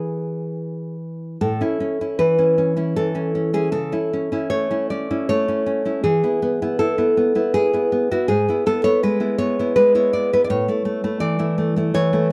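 A fingerpicked, full-bodied nylon-string guitar sits up front alone in this nostalgic, sunny romantic classical piece in A major at 80 BPM in 3/4, its uneven, rubato beats moving from a brief opening on E into a longer passage at 1.4 s that passes through A, A/C#, E and E/G# before settling on A at 10.5 s, all tuned slightly low to A4 = 439 Hz and framed by light reverb and a dark production in this short cut from a longer work.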